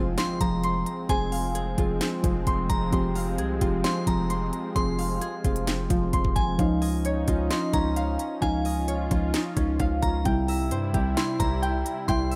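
A knocking, up-front trap drum kit with a sharp snare, crisp hats and handclaps drives this melancholic, menacing half-time hip hop excerpt, joined by a heavy, distorted 808-style bass, muted felt-like synth keys with chorus, a smooth, warbling analog pad in the background, mellow fingerpicked concert harp arpeggios through digital delay, a crystalline synth bell second line entering at 0.2 s, and a very quiet impact near the start, all set in light reverb and digital ambience.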